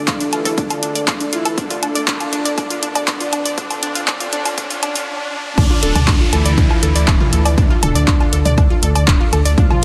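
Melodic techno with a hypnotic, dark mood, this excerpt opens on a build-up where a deep, moody analog pad holds sustained chords under a bold, brassy synth lead with chorus and dub echo, while a lush, punchy unison pluck spins arpeggios through sidechain pumping. A heavy, layered electronic kick and a dry, overdriven analog drum machine of handclaps, hi-hat, toms and woodblock drive the groove, as a riser and swell sit in the background and a filter sweep runs until a brief stop at 5.1 s. The drop lands at 5.6 s with a rumbling, detuned saw bass pumping beneath the lead and pluck, all inside a dense, heavily limited mix with light reverb.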